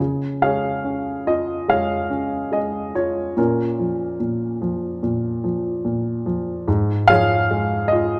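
A close, intimate baby grand piano, its action noise audible and its short-sustained tone natural and up front, plays a calm, peaceful classical solo in D-flat major at a rubato 72 BPM in 4/4, moving from Db to Bbm and on to Db/Ab in a brief excerpt cut from a longer piece, set in light reverb with a dark production.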